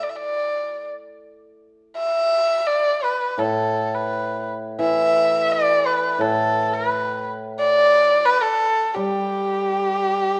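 Heard in a moderate stage reverb, this graceful, pastoral fragment of Chinese traditional chamber music opens with a dark, intimate solo erhu up front, its airy bow, soft attack, light vibrato and gliding portamento shaping a freely flowing rubato melody, before a shimmering, ringing hammered dulcimer enters at 3.4 s with a lower accompaniment set further back.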